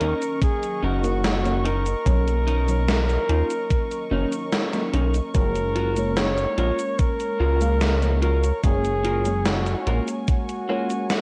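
A hazy digital ambience with light reverb wraps this woozy, faded vaporwave excerpt, which moves at a relaxed 73 BPM in a straight 4/4 in F# major, tuned slightly low at A4 = 438 Hz. A mellow flugelhorn carries the melody in a jazz-style solo voice with light vibrato, trailed by tape echo, while an FM electric piano layered with a soft pad supplies dreamy, detuned accompaniment colored by phaser, analog chorus and tape echo. Soft, sul tasto strings hold floating chords in the background, and a dark, slightly broken-up electric guitar plays a compressed, fingered riff through lush chorus. Up front, a glossy pulse-wave synth bass with tube saturation anchors the low end until 10.0 s alongside a gated 80s drum machine of cabasa, hi-hat and snare with gated reverb and 12-bit grit, while a thumpy sampler-style electronic kick enters at 0.4 s. The harmony drifts from Bmaj9 to F#maj7 at 5.3 s, and a clean electric guitar fill slips in at 10.3 s before the clip cuts off.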